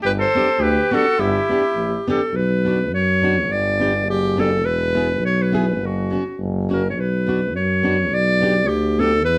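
A clear, classical-style clarinet carries the melody up front in this jolly, bouncy alpine folk dance in 2/4, with a lightly swung, rubato feel. A warm trumpet adds a second line only until 2.1 seconds, while a roomy tuba with light vibrato and a soft attack holds down the bass throughout. A fingerpicked, full-bodied jumbo steel-string acoustic guitar, plugged in, fills out the accompaniment as the band plays live together in one room with moderate studio reverb, moving into a new section at 2.3 seconds in this brief cut from a longer piece.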